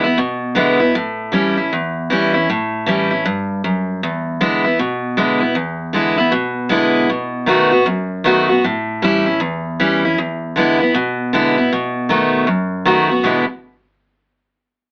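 An AM-radio tone with light reverb frames this rowdy, rollicking rock passage, cut from a longer piece and played at 156 BPM with swung eighths in E mixolydian. A full-bodied, up-front picked steel-string dreadnought guitar carries it alone from 0.0 to 13.4 seconds, working through E7, A7 and B7 changes before landing back on E7 at 13.3 seconds as a new section begins.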